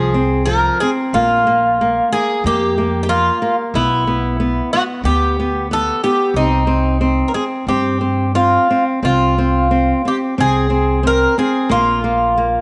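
A fado-style ballad opens with all three parts together: a metallic Greek bouzouki carries the melody on picked double strings with some octave-doubled courses, over fingerpicked flamenco guitar with fresh strings and a woody pizzicato upright bass. The rubato feel and minor harmony give the piece a longing, mournful mood, with the bouzouki sitting a touch louder than its companions while every instrument stays up front. An echo chamber reverb lends a moderate sense of space, the highs are cut off above 10.9 kHz, and the recording is a short cut from a longer piece, ending at 12.6 seconds.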